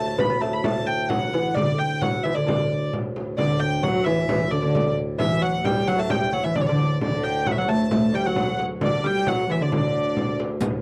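A rich, smooth hurdy-gurdy leads this festive, ancient-sounding medieval dance, its wheel-bowed melody sitting up front in the upper register at a straight 132 BPM in 2/4, D major. Beneath it a delicate, fingerpicked lute with double gut strings carries a second line, while a pedal harmonium holds a mellow, breathing drone low in the texture. A small, bright frame drum enters at 0.2 seconds, heard at a distance with hard hands, and at 3.4 seconds, as the opening section repeats, a viola da gamba joins with a reedy, ringing gut-string tone and light vibrato on its own second line. A riq adds a brief flash of bright jingles at 10.6 seconds, just before the cut. The sound is a dry, close 1970s-style studio recording with light reverb, taken from a longer piece.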